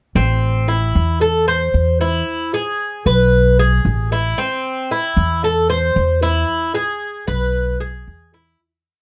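A straight, danceable 4/4 at 114 BPM drives this short Cuban son and guajira piece in A harmonic minor, alternating between A minor and E. The pizzicato upright bass plays a woody, thumpy tumbao that anticipates the chords, while the picked Cuban tres spins a metallic, double-strung guajeo of arpeggios with some octave-doubled strings, both sitting up front in light reverb. The whole piece runs from 0.2 s and fades out between 6.5 and 8.6 s.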